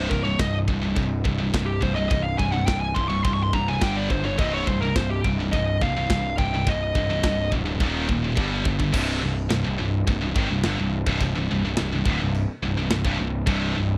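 Heavy metal in C minor at 106 BPM, this epic, heavy excerpt opens with a dark, up-front lead guitar soloing through distortion and slapback echo until 7.5 seconds, over two picked high-gain rhythm guitars playing the riff, one bright and one scooped in the background. A growly fuzz bass sits up front beside a tight acoustic drum kit with a medium-tuned snare, a rolled-off top and china and crash cymbals, which plays a fill at 8.4 seconds leading into a new section at 8.9 seconds. The mix has a dry, close 1970s-style studio sound with little reverb, moving through power chords on C, G and Eb with a C minor chord.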